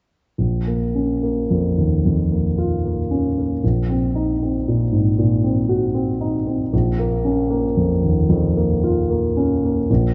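A solo concert grand piano enters at 0.4 seconds with a dark, mellow tone, deep bass and short sustain, sitting up front in a reverberant recital hall. In a slow, rubato triple metre, its accompaniment moves from the minor tonic to a half-diminished chord over the same bass and back again, carrying an elegiac, yearning mood. This classical excerpt, cut from a longer piece, has a vintage smoothness to its sound and ends at 10.1 seconds.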